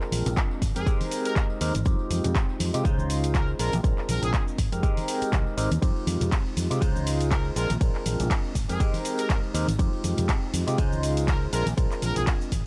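The groove is a swung 4/4 at 121 BPM, with 16ths pushed to 56% swing in a filtered disco house style, nostalgic and sensual in mood, in a short cut from a longer piece. A punchy, up-front electronic kick enters at 0.4 s over a layered house kit of handclaps, bright hi-hats, ride cymbal and shaker, whose hats, cymbals and percussion pump with sidechain, while very quiet, close tambourine and congas sit underneath. A fingered electric bass, direct and amped with a warm tone, pumps between Ab1 and C3, and a barky tine electric piano, lightly overdriven through a combo amp with phaser and 12-bit sampler grit, plays chords up front between Ab3 and C5. From 0.8 s a brilliant trumpet section with vibrato states a narrow pop-style line between Ab4 and Bb4, gritty and pumping as well. The harmony cycles through Bb7, Abmaj9, Fm7 and Dbmaj7 in a dry mix with little reverb.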